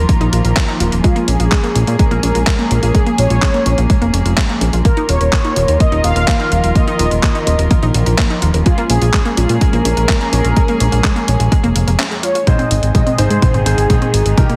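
Italo disco at 126 BPM in Bb minor, this bittersweet, nostalgic excerpt is cut from a longer piece and moves in a straight 4/4 over chords that shift from Ebsus2 to Bbm7 before landing on Ab at 12.5 seconds. A mellow, brassy synth lead carries the melody with chorus, delay and vibrato, sitting over a dark, nasal chamber string section that holds sustained chords through a low-pass filter. An analog pluck with round, detuned tone runs arpeggios in the background through chorus and tape echo, while a fat, thick analog bass built from sawtooth and square waves sits up front. The punchy, layered electronic kick drives the groove beside a gated 80s digital drum machine supplying handclaps, hi-hat and toms treated with gated reverb. At 12.5 seconds a drum fill arrives, the strings get a filter sweep, and a clear, intimate baby grand piano enters with short stabs, its action noise audible. The mix carries light reverb and a heavily compressed, radio-style sheen.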